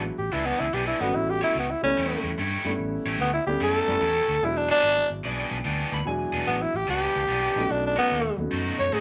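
Electric blues shuffle at 147 BPM in 4/4, swung on the eighths, with a soulful, gritty mood in this short passage cut from a longer piece. A growling tenor saxophone carries the melody up front, its raspy tone marked by scooped notes, light vibrato and a jazz-style soloing voice. Beneath it, a cranked stack guitar plays a bright, overdriven picked riff, while a dark upright piano adds woody, mellow accompaniment with long sustain and audible action noise. A vintage muted fingered bass gives a round, foam-muted low end, and an electric slide guitar slips in briefly from 5.2 to 6.4 seconds with a slightly broken-up second line high above. The changes move from E7 to A7, back to E7 and on to B7, all set in a moderate small-room ambience.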